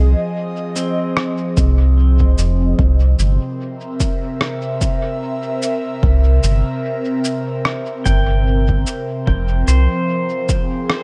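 An airy, breathy pad and a round, deep analog bass open this hazy ambient dub excerpt together, settling into F minor at a slow 74 BPM in 4/4 with a gentle swing on the sixteenths. The pad holds soft, detuned sustained chords with a slow attack and a faint noise layer, coloured by chorus and phaser, while the dark, sustained bass sits up front and falls away at 9.9 seconds. From 0.8 seconds a clean electric pedal steel guitar, played with fingerpicks and slide, drifts in with quiet arpeggios shaped by volume swells and trailed by tape echo. A muffled, tape-warm electronic cabasa and rim click enter at the same moment, thrown into dub echo, and a punchy, layered electronic kick joins shortly after. The harmony moves from Fm7 to C7 before returning to Fm7 near the end, all set in a light reverb that keeps the mood deep and hazy.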